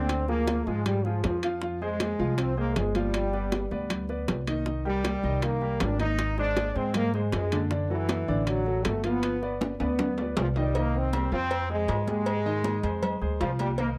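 A bright, up-front trombone section carries the melody with light vibrato and a slapback echo in this fiery, driving salsa excerpt at 158 BPM in C minor. Beneath it, a woody, thumpy pizzicato upright bass and a clear grand piano with audible action noise play through minor-key changes. Round, low-tuned bongos and cowbell, ringing metal-shell timbales and agogo bells, and soft, high-tuned congas in the background fill out the percussion, with a drum fill from 9.6 to 10.8 seconds in a dry, close 1970s-style studio sound with light reverb.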